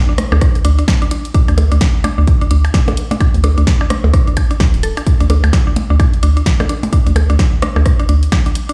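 A hollow, knocking FM bass sits up front in this cool, quirky minimal techno excerpt, its dark, bouncy tone pumping alongside a punchy electronic kick in a swung 4/4 groove. Around them, a woody, round mallet-like synth pluck plays a riff through chorus, tape echo and sidechain pumping, while a house drum kit adds hi-hat and a layered snare, and electronic rim clicks and percussion blips carry a tape-warm echo. The track sounds as if played on a big sound system in a bare stone room, wrapped in digital ambience.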